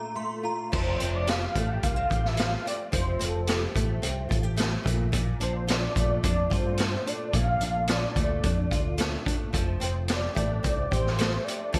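A straight 4/4 pulse at 109 BPM carries this laid-back, nostalgic indie and bedroom pop excerpt in F major, where a glassy, crystalline synth bell with analog chorus and delay sounds over a fingerpicked flamenco guitar before a raw garage drum kit, a round, punchy fretless bass and a soft octave-layered synth lead enter at 0.7 seconds. The gritty, saturated drums sit up front with a boomy kick and gated reverb, while the mellow, vibrato-tinged lead and the bass both carry ensemble chorus, and the guitar wavers with a warbly pitch drift. Bright 1980s-style digital production, a lush hall reverb and lossy compression artefacts colour the Bbmaj7 to Fadd9 changes.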